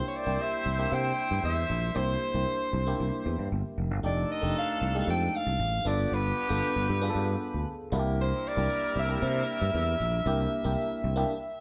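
Upbeat, urban pop at 116 BPM in a straight 4/4, cut from a longer piece: a punchy, forceful soprano saxophone with light vibrato carries the melody, a distant, roomy horn section plays a second line beneath it, a glassy, bell-like FM electric piano treated with chorus and phaser supplies the accompaniment, and a growly, up-front fretless electric bass enters at 0.3 s, all played live in a moderate stone room over C7, F13 and G7 chords before a stop at 11.3 s.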